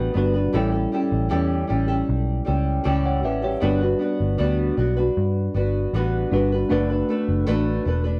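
A fingerpicked flamenco guitar sits up front in this dreamy, sunny indie pop excerpt, its acoustic tone bathed in lush chorus and a warbly pitch drift. Beside it, a worn tine electric piano, slightly out of tune and played clean through a combo amp, adds a gentle, warm glow. Underneath, a dark, round electric bass, picked and foam-muted, comes through amped and close to the listener. All three parts play together across the full 8.2 seconds in a straight, unhurried 4/4, moving from Gmaj7 to A7, back to Gmaj7 and on to D6. Light reverb touches a dry, close sound that recalls a 1970s studio session.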